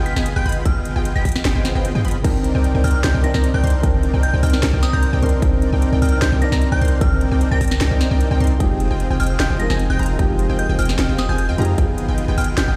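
A bright, detuned unison pluck arpeggiates in the background over a huge, compressed supersaw riff with tape coloring and a deep, boomy 808-style bass, each pumping against the sidechain, as this emotional, lush future bass excerpt opens in C minor at 151 BPM in a half-time 4/4 feel. A glassy FM synth bell carries the melody through chorus, delay and 12-bit sampler grit. A trap kit with a sharp snare and metallic hats is joined at 0.7 seconds by a punchy, layered electronic kick, while a brief background swell sounds just before a soft, felt-muted upright piano enters at 2.2 seconds, moving through Cm9 and Fm9 to G7b9b13 inside a big, bare-room ambience.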